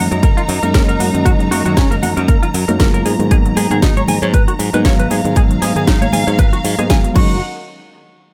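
Sunny and feel-good, this brief nu-disco excerpt at 117 BPM in F# major rides a swung 16th-note groove, with a punchy, up-front electronic kick, a house drum kit with cracking snare and metallic hats, very quiet cabasa and congas, and a bright, growly fingered bass under a reedy electric piano with fast tremolo, delay and sidechain pumping, a lush bowed violin section holding sustained chords, a round detuned analog pluck playing arpeggios, and a clean semi-hollow guitar riff with lush chorus and delay, all moving between F#6 and G#m9 in a dry, close-sounding mix.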